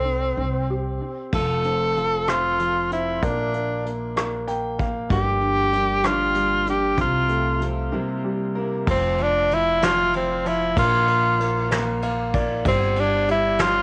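This six-eight pop ballad excerpt feels tender and swaying, with a breathy tenor saxophone carrying the melody up front, its clear tone touched with vibrato and a tape echo. A concert grand piano with deep bass and long sustain accompanies throughout, adding fills, while a woody, thumpy upright bass played pizzicato anchors the low end. A vintage brush drum kit enters at 1.3 seconds, its dark cymbals, fat snare and punchy kick sitting mid-forward with a rolled-off top. A fingerpicked steel-string acoustic guitar slips in behind with full-bodied arpeggios from 5.1 to 8.9 seconds, and a break lands just before a new section begins at 8.9 seconds. Light reverb and the soft haze of a home cassette recording give the whole piece an intimate, homespun character.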